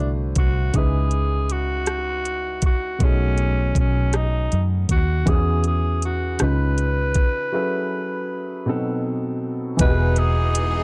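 A slow, straight 6/8 pulse at 53 BPM in dotted quarters carries this tender R&B piece in E major. The electronic, produced drum kit enters at 0.4 s, with a knocking kick, metallic hi-hats and rim clicks up front, beside a dark, round, punchy muted fingered electric bass. A natural-sounding grand piano plays the accompaniment under a raspy, gritty tenor saxophone that carries the melody with a vintage edge and digital delay. The harmony moves through extended chords such as D9, C#m9, B13 and F#m11, and a break arrives at 7.5 s. At 9.8 s the music lands on Emaj7 as a bowed studio string section with vibrato and a mellow, distant horn section playing tight stabs join in the background. The production is dark and warm, with little reverb.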